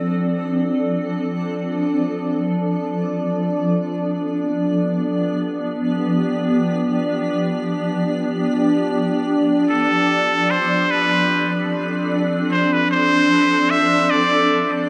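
A nasal, breathy straight-muted trumpet with jazz-style vibrato enters at 9.7 seconds to sing a smooth solo melody through dub echo over a cloudy, evolving granular pad that sustains blurred Dm7 and G7 chords from the start, giving this spacious, meditative ambient excerpt in free time and D dorian a dark, springy reverb glow.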